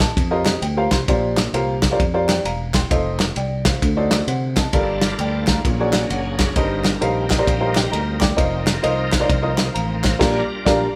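An upright piano with a woody, slightly detuned character drives this soulful, jubilant uptempo gospel excerpt in Bb major at 131 BPM, swinging together with a round fingered electric bass, an up-front soul drum kit with dark cymbals and a tight kick, and crisp group handclaps set in the background. The piano adds fills near the start and again around 7.0 seconds, while a bright, shouting tonewheel organ with key click, chorus vibrato and a slow rotary speaker enters at 4.7 seconds on sustained chords. The band plays live in a moderate stone room and closes the passage with an accent on Bb6 at 10.2 seconds.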